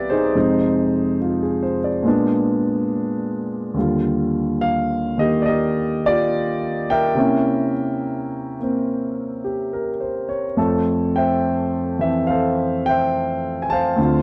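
A relaxed, swinging 4/4 at 70 BPM, lilting on the eighth notes, carries this short solo jazz excerpt, played on a concert grand piano that spans C2 to A5 from 0.0 to 14.2 s. The instrument sounds intimate and natural, with deep bass, long sustain and audible action noise, sitting up front in a dry, close 1970s-style studio sound touched by light reverb. The harmony moves from Fm7 through Bb7b9 and Ebmaj9 to C7b9, arriving on Fmaj7 at 10.6 s.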